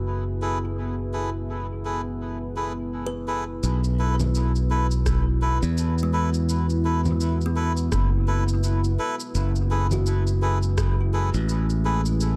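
A dark, chorused ambient pad holding a single sustained chord opens this spacious, deep ambient dub excerpt, alongside a growly, up-front fingered electric bass with tube saturation and a woody kalimba ringing out arpeggios through dub echo in the background; a reedy, breathy melodica soon adds echoed stabs, tape-warm electronic shaker, congas and rim click arrive at 3.6 seconds, and a deep analog kick sits in the background from 5.1 to 10.9 seconds, all in an echo-heavy mix with little reverb.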